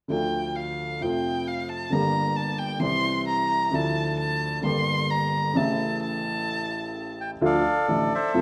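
A single bowed violin, rich and nasal with vibrato, carries a smooth, even second line from the opening until 7.2 seconds, when a reedy, dark bandoneon steps up front with the melody through to 8.4 seconds. Beneath them, an intimate, woody upright piano with audible action noise and long sustain plays a boxy accompaniment, heard in a moderate large-studio reverb. This dramatic, tense tango in D minor is taken at 131 BPM with a rubato feel, tuned to A4 = 445 Hz, and is cut from a longer piece, moving through chords such as Gm and A before settling back on Dm.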